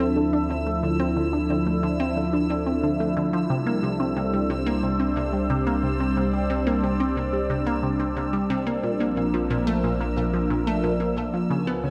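Drenched in a wet echo-chamber reverb, this cosmic, mysterious slice of ambient, sequencer-driven space music moves at 90 BPM in a straight 4/4, with a swirling phased analog pad holding sustained chords up front beside a juicy, squelchy resonant blip pluck riff treated with phaser and delay, a deep, round sub bass underneath, and a bubbling stepped-filter texture glinting high above, as the harmony shifts from Dmadd9 to Csus2 at 3.5 s and to Bb at 8.8 s.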